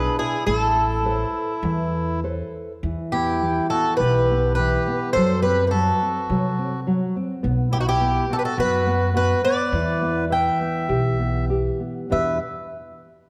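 A fingerpicked twelve-string guitar carries the melody from the first moment, its shimmering, octave-doubled tone boxy and up front with audible finger squeak and a swing feel, while a reedy, clear single-reed accordion sings a second line beneath it. A dark, thumb-plucked nylon-string guitar and a growly, woody pizzicato upright bass on steel strings fill out this mournful, passionate fado-style ballad in E minor, moving at a rubato 104 BPM in 4/4 through Amadd9, Em at 2.8 seconds, F#dim, B5 and Em7. A moderate concert-hall reverb surrounds this passage, cut from a longer piece, with all four parts playing through to 12.4 seconds.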